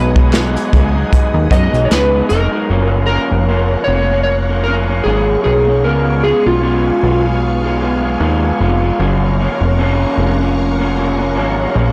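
Hazy and nostalgic, this bedroom-pop excerpt with a gentle swing opens on a dark, slightly broken-up slide guitar solo over a lush vintage string machine, a lo-fi electric guitar through a small old amp and a punchy, funky analog bass with a ring-modulated, sawtooth bite, while soft brushed drums and very quiet, crisp handclaps appear only briefly near the start before the slide melody drops out at 7.2 seconds, all wrapped in a blown-out, overdriven recording with light reverb.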